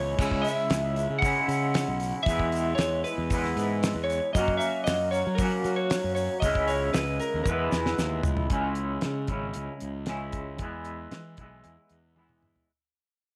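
Trippy and hazy, this psychedelic rock excerpt sets a slightly broken-up slide guitar melody with slapback echo over a twangy, clean, double-tracked guitar riff with tremolo, a round, fuzzy overdriven fingered bass, a damped 70s drum kit with a fat snare, tight kick and dark cymbals, and a grainy egg shaker in the background, all in light reverb and small room ambience, with the slide guitar dropping out at 8.2 seconds during a drum fill before the music fades out from 8.5 seconds.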